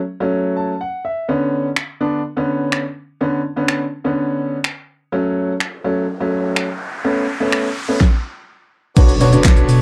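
A clear grand piano opens this driving, energetic dance-pop piece in B minor at 125 BPM, its sidechain-pumped, tape-tinged accompaniment joined at 1.8 seconds by an up-front, overdriven pop drum kit of knocking kick, fat snare, hi-hat, shaker, finger snaps, handclaps and crash cymbal, while an electronic riser from 6.0 seconds leads to an impact at 9.0 seconds, where a round sine sub bass and a majestic, brilliant full pipe organ in the background arrive, all set in light reverb with the character of a cassette home recording.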